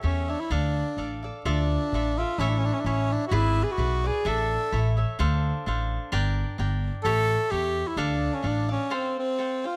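Mexican folk in a mariachi vein, this romantic, proud fragment from a longer piece moves at 128 BPM in a straight 2/4 feel in D harmonic minor, with chords running from Dm through A and E7/G# to Gm, A7 and a closing Fadd9. A warm tenor saxophone carries the classical-style solo melody up front with light vibrato and a soft attack, pausing at 5.0 seconds and returning at 7.0. Bright, crisp picked cavaquinho accompanies throughout, while a woody, dark pizzicato upright bass sits prominently beneath until 8.7 seconds, all captured by close, detailed microphones in light reverb.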